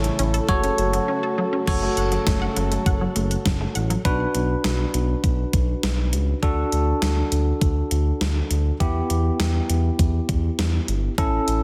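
A bell-like, bright tine electric piano carries the accompaniment in this cool, nocturnal synth-pop excerpt at 101 BPM in B minor, over a smooth sawtooth synth bass, a thumpy, overdriven 12-bit drum machine with crash, hi-hat, kick and snare, and a swirling phased analog pad and squelchy, resonant blip-pluck arpeggios that both stop at 4.0 s, with a break at 1.1 s and a Bm, D, Em chord sequence from 4.1 s, all set in a lush hall reverb.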